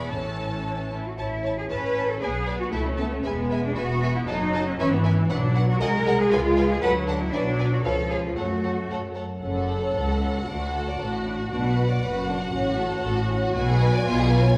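A quick classical-period movement for string orchestra, cheerful and spirited in a straight two-beat metre, cut from a longer piece. The violin section carries the melody high in its range with a focused, smooth-topped tone and vibrato, while a second violin section, more distant and even, plays a supporting line beneath it. Violas fill in the accompaniment with lush, rich bowing, and the cello section, clear and up front, shares the bass with the double basses, whose deep, smooth sound also sits prominently in the mix. The harmony turns toward the minor from 5.3 seconds, and a contrasting section begins at 9.4 seconds. All five sections play together throughout, set in the reverberant space of a recital hall or church.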